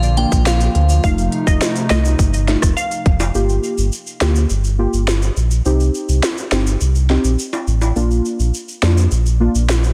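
A deep, full sine sub bass with an octave sits up front through this sultry, tough dancehall cut from a longer piece, joined by a tight, sharp island pop drum kit with overdrive and a large-room sound whose kick drops out at 3.3 s, plus bright, vintage tube shaker and timbales. Dark, detuned chord stabs with chorus carry the accompaniment, while a hollow, flute-like pad with sidechain pumping holds sustained chords until 3.3 s. A crystalline FM bell with phaser and delay plays a brief second line over the opening, and a warbling wavetable pluck with ring modulation and a filter sweep carries the melody from 1.0 s, all in a dense, heavily limited modern master with digital ambience.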